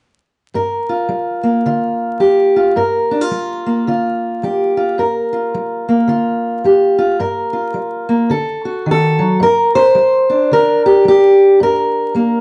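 Acoustic country blues in a smoky, brooding mood, this short excerpt from a longer piece features a lone fingerpicked steel-string parlour guitar, dark and boxy and set up front, swinging in 4/4 over a Gm7 that moves to D and settles on Gm around 9.4 seconds, with light reverb, vinyl crackle and a muffled top end giving the feel of a live room recording.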